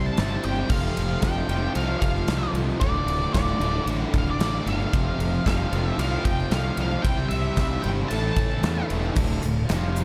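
Classic rock in D minor at 113 BPM, brooding and swaggering, with a growly fuzz bass and a huge arena drum kit pushed up front, its punchy kick and bright cymbals ringing in a pumping hall. A dark octave-fuzz lead guitar carries the melody with slapback echo until 8.8 seconds, over three distorted and overdriven riff guitars, one of them double-tracked and very quiet, while a shimmering twelve-string acoustic adds faint accompaniment and a rotary tonewheel organ is barely audible. The chords move from C through F, Dm and A, and a grainy tube shaker slips in at 9.2 seconds as this excerpt from a longer piece closes.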